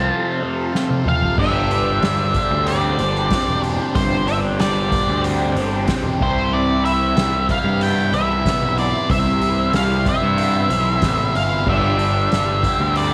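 A kaleidoscopic, trippy stretch of psychedelic rock opens on an F chord, with a dark, up-front octave-fuzz lead guitar carrying the melody over a buzzy vintage combo organ that holds sustained chords, clean and set back in the mix with a light vibrato. Beneath them, a double-tracked, compressed fuzz guitar plays a distorted riff through a phaser, while an overdriven, fuzzy picked electric bass sits up front with a direct-and-amped growl. The lead's tone is thickened by distortion and a slapback echo. At 0.8 seconds a soft-mallet drum kit enters with a fill, its boomy kick, medium-tuned snare, toms, hi-hat and crash cymbals struck with mallets in a big-room sound. From 1.4 seconds the harmony settles into a Gsus4, moves to Cmaj7, and returns to Gsus4, the whole passage wrapped in light small-room reverb.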